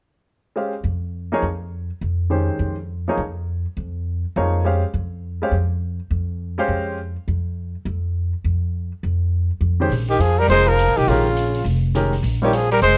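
Spiritual and searching, this brisk modal jazz piece in Bb dorian swings at 205 BPM. A clear, short-sustained baby grand piano voices a rootless Bbm9 over a woody pizzicato upright bass, then the harmony turns chordless at 5.2 seconds, and the piano falls silent at 7.0 seconds while the bass carries on alone. The piano returns at 9.8 seconds, joined at 9.9 seconds by a natural, roomy hi-hat, and a breathy, mellow trumpet leads with vibrato and scooped notes above a bright tenor saxophone second line, all in a light reverb before the cut at 13.0 seconds.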